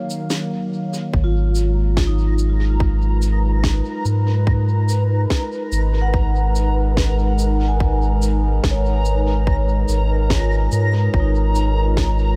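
A steady, straight four-beat pulse carries this hazy, spacious ambient dub fragment, cut from a longer piece. Electronic cabasa and a woody snare, overdriven and soaked in dub echo, enter a moment after the pad and vibraphone during a brief break on D#m7. At 1.1 s a tight, overdriven electronic kick and a deep, round sine sub bass, sitting up front, arrive as the harmony settles onto G#m7. A warbling, lo-fi pad of detuned sawtooth and triangle tones holds sustained chords through chorus and reverb, while a ringing vibraphone with soft mallets and slow motor vibrato plays airy arpeggios through tape echo. From 1.8 s a reversed, swelling, granular texture adds a bright, dreamy shimmer on a single high note, all within a digital ambience.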